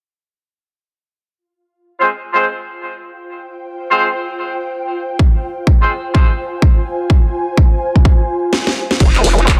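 A swung sixteenth-note groove in four drives this gritty, aggressive bass house fragment. Clear, tight horn stabs with light vibrato and octave doubling arrive at 2.0 seconds, low-pass filtered and trailed by delay, pumping against a sidechain alongside an ethereal, airy pad of detuned saw and triangle voices that fades in with a slow attack, a long release, ensemble chorus and its own reverb. A punchy, tape-warm electronic kick enters up front at 5.2 seconds. A break and drum fill then bring in a house kit with a cracking snare, handclaps, hi-hat and crash cymbal. At 9.0 seconds a nasal, resonant vowel-sweep wobble bass lands on a low F, saturated, overdriven and chorused with a formant-filtered wobble. The mix sits in light digital ambience under a dense, heavily limited modern master.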